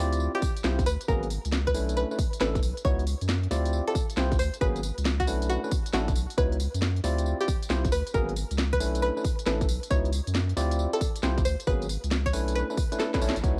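A late-night, moody two-step garage groove opens at once on a deep, saturated sub bass and a tine electric piano playing stabs, the piano softened by a low-pass filter and cassette tape coloring. Running at 136 BPM in 4/4 with a 66% swing on the sixteenths, the house drum kit brings a cracking snare, crisp hats and tambourine, while a punchy, layered electronic kick sits up in the mix alongside the thick, up-front bass. A bright, twangy resonator pluck carries the melody between F#4 and C#5, its string-like tone dressed in chorus, phaser, analog delay and tape grain. The harmony cycles through minor eleventh chords (Dm11, G#m11, Bm11 and C#m11) across the whole stretch, which plays as a drop. Near the close, a drum fill arrives at 13.0 seconds and a band accent lands at 13.3 seconds, all set in light reverb with the hazy feel of a home cassette recording.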